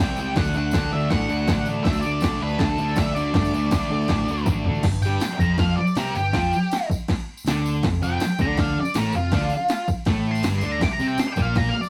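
Swaggering and rowdy, this short garage rock cut at 161 BPM pairs a bright, double-tracked fuzz guitar riff with a punchy, overdriven analog drum machine up front, a picked, amped electric bass, and a jingly tambourine in the background, while a dark octave-fuzz lead guitar launches into a solo at 4.8 seconds after a drum fill, all captured in a rough rehearsal-room sound.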